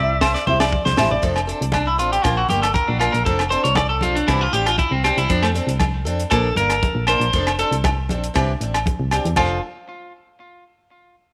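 A slightly broken-up electric guitar, compressed and up front with phaser and tape echo, spins arpeggios through this sunny, danceable highlife excerpt in F major at 118 BPM, over a boxy picked archtop acoustic guitar, a punchy, dark FM bass, and a dry, polished funk kit with a high-tuned snare and tight kick, joined just after the start by ringing agogo bells and low-tuned congas in the background, while a mellow jazz-style clarinet with vibrato and subtone sounds only until 0.7 s and a clean electric guitar solo runs from 1.2 s to 9.4 s in a small, lightly reverberant room.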